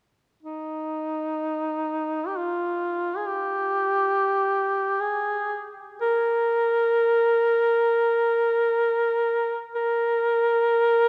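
Bathed in a moderate cathedral reverb, this brief excerpt of Caucasian folk music places a warm, vibrato-laden duduk up front as the sole voice from 0.4 seconds, its folk-style line moving between Eb4 and Bb4 in a mood of solemn longing.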